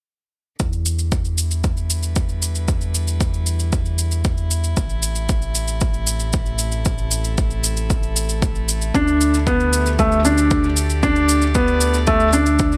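A small, lightly reverberant room frames this cinematic, moving piano-and-strings electronica cut from a longer piece, set in E minor at 115 BPM in a straight 4/4. From the opening, a floating, sul tasto string quartet fades in with sustained chords moving from Em7 through Am to Dsus4, pumping against the sidechain alongside a round, dark analog bass. Meanwhile, an overdriven, deep electronic kick sits up front, joined by a gritty shaker. At 8.9 seconds a felt-muted upright piano enters with an intimate riff, its action noise audible and its notes trailing tape echo.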